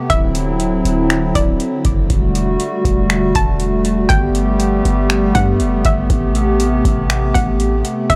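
Melancholic and hazy, this atmospheric cloud-rap excerpt moves at 120 BPM in a half-time 4/4 feel, tuned to A4 = 438 Hz, cycling through D9, Em11, Gmaj9 and Am9. A soft, flute-like detuned pad holds sustained chords up front with chorus and sidechain pumping, while a nasal, bouncy square-wave pluck carries the melody with chorus and analog delay. From 0.1 s a boomy sine 808-style bass and an analog drum machine with a deep kick, metallic hi-hats and finger snaps join in. The sound is dry and gritty, with transformer saturation on the whole mix.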